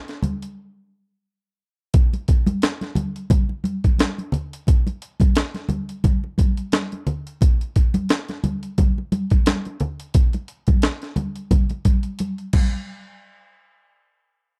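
Funk groove at 88 BPM in 4/4, with a light swing on the sixteenths that gives it a funky, hypnotic pull. A sampler-style breakbeat drum kit carries the rhythm from 0.1 seconds, compressed, pitched up and gritty, with a thumpy kick, a high-tuned snare, hi-hat and crash cymbal, and the sound of having been re-recorded in a large room. Congas join at 0.2 seconds, thick-skinned and medium-tuned, close and dry, sitting up front alongside the drums. A break arrives at 0.6 seconds before the main groove settles in, and a drum fill at 12.2 seconds leads into a brief closing section. The overall recording is dry and close, in a 1970s studio style, and this passage is cut from a longer piece.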